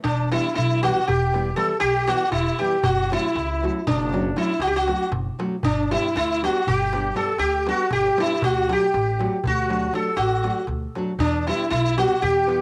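Straight eighths in 11/8 at 237 BPM give this festive, virtuosic Balkan wedding-band fragment its lopsided lilt, with a crisp metal-shell darbuka sitting close and dry in the background. Up front, a plectrum-plucked sitar carries the melody with buzzing, shimmering sympathetic strings, shadowed further back by a smooth, vibrato-laden classical trumpet. A growly pizzicato upright bass enters at 0.1 s and a full-bodied fingerpicked nylon-string guitar, finger squeaks included, joins at 0.3 s over Em, F#m, G and D. The sitar, trumpet and guitar carry a cassette-tape colour and the bass a transformer saturation, while the band sits in a small room with moderate spring reverb on a homemade cassette recording.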